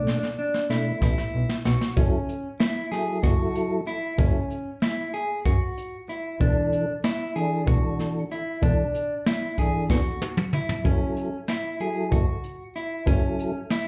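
Bright and intricate, this progressive instrumental piece moves in an uneven 7/8 meter with a straight feel, heard live through a club's PA with moderate room reverb. A jazz kit played with brushes opens with a fill, its boomy kick and medium-tuned snare sitting up front, and it fills again at 9.9 seconds. A mellow, round, dark tonewheel organ carries the accompaniment through chorus vibrato, a slow rotary speaker and slapback echo. Meanwhile a clean, fingered electric guitar spins arpeggios, bathed in spring reverb and its own slapback echo. A bowed double bass joins at 1.0 seconds, focused and smooth-topped with vibrato. The harmony shifts from Bm7 to F#m7, passes through E7sus4 and returns to F#m7 in this clip cut from a longer performance.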